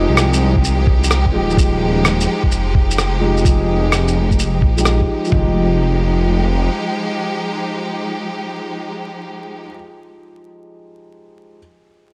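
An excerpt of ghostly, rainy future garage at 128 BPM in F minor opens on an Fm9 chord, with a soft, felt-muted upright piano pumping under a filter sweep and tape echo until 11.6 s, clear bowed strings with vibrato and 12-bit sampler grit sustaining chords, a menacing, saturated detuned saw bass swelling up front through its own filter sweep until 6.7 s, and muffled, pitched-down sampler drums with a thumpy kick, toms, a rim click and a shaker swinging over vinyl crackle and light digital reverb until about 5.5 s.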